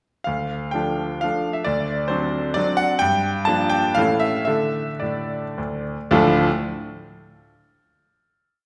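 A bright grand piano opens this short, complete classical piece, a romantic dance in 3/4 set in D minor and tuned to A4 = 441 Hz. The mood is wistful and nostalgic, with a rubato feel that ranges from 105 to 143 BPM and slows from 2.3 seconds onward. A single-line melody sits over bass and chords that stress the second or third beat. The dance moves in dotted rhythms through a harmony passing from D minor to D7, G minor seventh and A before returning to a D minor chord at 6.1 seconds. The piano tone is brilliant and intimate, with audible action noise and long sustain, and it sounds present and up front even though it is heard from further back in a recital hall. That hall's reverb is wet and lingers as the piano's final chord fades at 6.5 seconds.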